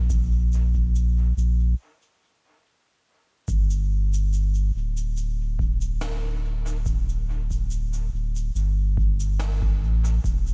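A dry sound frames this deep, hazy ambient dub excerpt in G minor, moving at a straight 71 BPM in 4/4 and tuned to A4 = 444 Hz. A round, sine-like sub bass sits up front with a mellow, sustained tone. Behind it, an analog electronic kick drum rings from a large room, while a natural, brushed shaker and snare carry a dub echo. The band stops from 1.8 to 3.5 seconds, and a new section begins at 3.5 seconds.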